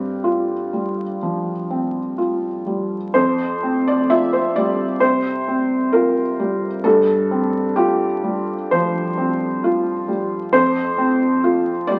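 Hopeful and intimate, this short excerpt from a longer neoclassical minimalist piece unfolds in F major at a rubato 60-67 BPM in 4/4, tuned slightly low to A4 = 438 Hz. A felt-muted upright piano plays alone, soft and mellow, sitting up front with audible action noise, ranging from F2 to E5 over suspended chords that settle onto an open F5 at 10.5 seconds. A moderate studio reverb surrounds it, while the crackle of a very old 78 rpm record gives the sound an aged patina.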